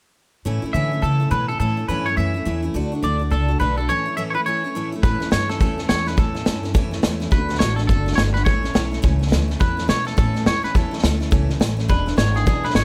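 A bright, full-bodied picked dreadnought acoustic guitar and a woody, dark pizzicato upright bass open this upbeat, rowdy rockabilly cut at 210 BPM with a swung feel in A major, joined at 0.7 s by an up-front, clean, twangy electric guitar lead dressed in lush chorus and tape echo. After a break at 3.9 s, a vintage drum kit kicks in at 5.0 s with a punchy kick, medium-tuned snare and hi-hat in a small, pumping room, its top rolled off. The chords move from A to D and back, landing on E7 near the close, all under a light reverb.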